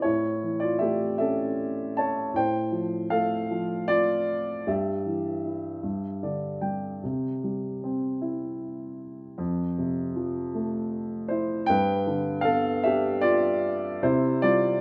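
Classical solo piano in a lyrical, rubato 6/8, this melancholic passage from a longer piece features a dark, mellow grand piano placed up front in a moderate concert hall reverb, moving from A through Dm7/A and Em/G to a brief fill between 5.8 and 7.0 seconds before settling through C, F and G back to C.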